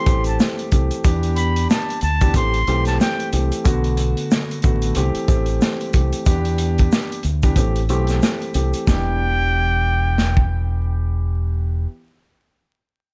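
A breathy, nasal straight-muted trumpet with vibrato and analog delay sings an intimate jazz-style solo in this tough, reflective boom-bap hip-hop excerpt, dropping out after 3.3 seconds and returning at 8.9, over a mellow, tape-worn dark grand piano, a round, deep dub fingered bass, a gritty, saturated breakbeat kit with a tight kick, and a grainy tube shaker tucked in the background, all set against vinyl crackle in a dry, close sound.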